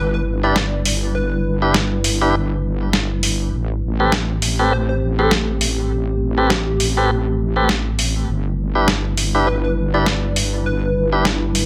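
Swaggering and gritty, this glitch hop excerpt rolls along at 101 BPM in 4/4 with a 16th-note swing, moving from G6 to Am9 at 3.5 seconds and back to G6 at 8.3 seconds. Up front, a pitched-down, compressed sampler-style drum kit of hi-hat and medium-tuned snare enters at 0.6 seconds, its overdrive lending a crunchy edge. A heavy, wobbling bass built from detuned sawtooth and sine tones sits low and saturated with chorus, while a tonewheel organ punctuates with lightly overdriven stabs, vibrato, key click and digital delay. Beneath them, a warbling, nostalgic tape-like pad sustains lo-fi chords with slow attack, long release, chorus and its own reverb, a filter sweep running across it throughout. Further back, a punchy, catchy unison lead of detuned square and sine waves with a noise layer carries the melody through phaser, subtle chorus and digital delay, all set in a light room reverb.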